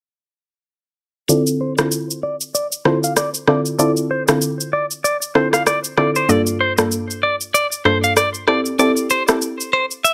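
Afrobeats with a sultry, hypnotic sway, this excerpt from a longer piece rides a swung sixteenth-note feel as a soft, round pluck with chorus and a low-pass filter lays down mellow accompaniment over Dm7, Gm9 and Am7 chords. A bright, twangy clean electric guitar, recorded direct, plays a high riff treated with vibrato, tape echo and a low-pass filter, while an electronic shaker and rim click keep the drums up front. Everything enters together at 1.3 seconds under a filter sweep and moderate studio reverb, with the pluck dropping out at 9.5 seconds.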